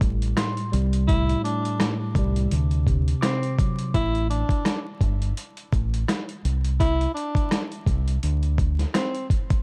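Dark, vinyl-crackled production wraps this moody, reflective boom-bap hip-hop fragment, set at 84 BPM in 4/4 with a lazy 16th-note swing over chords moving from Am7 through D7 and Gsus2 to Csus2. A gritty, overdriven sampler-style drum kit sits up front with a thumpy kick, medium-tuned snare, rim clicks and hi-hat, beside a round, deep fingered electric bass, while a mellow tine electric piano with a cassette-tape tint plays accompaniment until 4.0 seconds. A breathy tenor saxophone enters at 1.1 seconds with a jazz-style solo line, its vibrato and smooth top trailed by digital delay.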